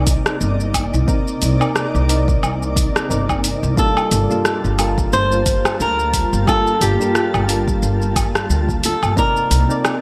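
A fingerpicked flamenco guitar with fresh strings and a digital delay steps up front at 3.8 seconds, carrying the melody over a relaxed sunset chillout groove in G minor at 89 BPM with a gentle 16th-note swing. Beneath it, soft, round electric-piano-like synth keys with chorus and delay play accompaniment while a shimmering, ethereal ambient pad holds sustained chords, moving from Cm9 to Gm9. A woody pizzicato upright bass anchors the low end alongside a deep, tape-warm electronic kick and a layered deep house kit of hi-hat, rim click, shaker and woodblock, all set in a moderate plate reverb with a bright 1980s-style digital sheen in this cut from a longer piece.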